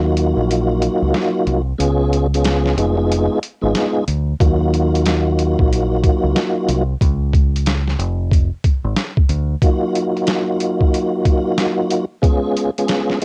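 A mellow tonewheel organ with key click, chorus vibrato and a fast rotary speaker provides the accompaniment in this gritty, moody boom-bap hip-hop excerpt at 92 BPM in Eb minor, its cassette-tape grain and the swung 16ths giving the dry home recording a lived-in feel. A round, dark fingered dub bass sits up front until 9.5 s, and a compressed, pitched-down sampler-style kit with a thumpy kick, medium-tuned snare and hi-hat enters at 0.2 s. The chords move from Ebmadd9 through Db7 and Fm7b5, pause briefly on a chordless passage before an F5, then return to Ebmadd9.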